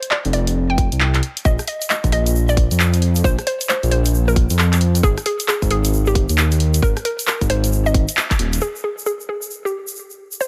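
A dry, close-sounding cut from a longer two-step UK garage track, soulful and moody, swinging at 134 BPM. A dark, detuned saw bass rumbles up front with tube saturation beneath a tight, layered electronic kick and a punchy analog drum machine of handclaps, hi-hat and rim click, while a hollow, bouncy square pluck carries the melody through chorus and delay over chords moving from Fsus2 to Bb5 and Ab5. A band accent lands at 8.2 seconds, and after the kick drops out at 8.4 seconds and the drum machine and bass stop at 8.6 seconds, the pluck and a grainy egg shaker carry on alone.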